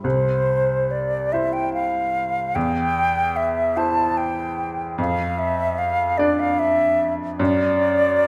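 Romantic classical duo for flute and grand piano, a lyrical, warm excerpt in C major at a slow, rubato 50 BPM in 12/8, tuned to A4 = 442 Hz. An airy, mellow silver concert flute sings the melody between C5 and A5 with expressive vibrato and a soft attack, set up front over a bright, brilliant baby grand accompaniment that spans C2 to D5 with long sustain. Both play throughout the 8.3 seconds in a reverberant recital hall, the harmony moving from C through C/E and Dm/F to a D/F# chord at 7.4 seconds.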